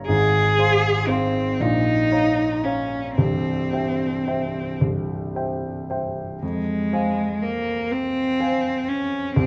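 A smooth, vintage-toned grand piano opens this solemn, elegiac romantic classical passage in F minor, joined at 0.1 seconds by a single bowed cello carrying the melody up front with a rich, focused sound and vibrato, the two moving with rubato through a slow 6/8 lilt of about 36-42 dotted-quarter beats per minute over chords of Fm/Ab, Bbm and C before settling back on Fm as a new section begins at 6.4 seconds, all heard through close, detailed microphones and a moderate scoring-stage reverb in a fragment cut from a longer piece.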